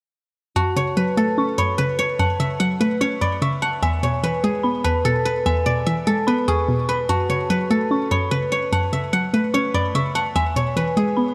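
Menacing, brooding hip hop with a half-time feel, this excerpt sets an up-front guzheng melody, silvery and ringing under fingerpicks, against an eerie, inharmonic synth bell carrying a mellow second line through chorus and delay. Beneath them, a hollow, bouncy square-wave pluck with a sub octave and chorus supplies the accompaniment, all three parts playing together from 0.6 to 11.3 seconds. A light, small-room reverb sits over a dark production as the harmony moves between F#m and E.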